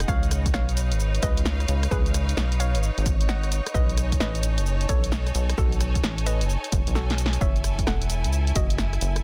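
A late-night, soulful two-step garage excerpt swings on 16ths as a rubbery, nasal square bass and a punchy, dry analog kick drive under snare, rim click, hi-hat and shaker, while a hollow, detuned square pluck carries the melody through chorus and tape echo, a silky string machine sits in the background with ensemble chorus, a distant, biting studio string section adds lush bowed texture with sidechain pumping over chords moving from C#9 to B13 to F#m9, and a drum fill lands at 7.0 seconds in a dense, heavily limited master.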